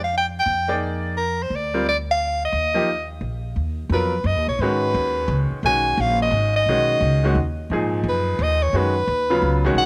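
Heard in a studio reverb with every instrument up front, this short cut from a longer modal jazz piece has a searching, cool mood. At 174 BPM in 3/4 with a swung eighth-note feel, it settles into G# dorian at 3.6 seconds, tuned slightly high to A4 = 441 Hz. A warm soprano saxophone carries the jazz-style solo melody from the start, sitting between Bb4 and G#5, while a woody, pizzicato upright bass with steel strings holds the low end from G#1 to G#2. A bright upright piano joins at 0.7 seconds with brilliant, intimate accompaniment, its action noise audible. The harmony moves from a rootless Gm/F through Eb5 to a long G#m9 before arriving on B near the close.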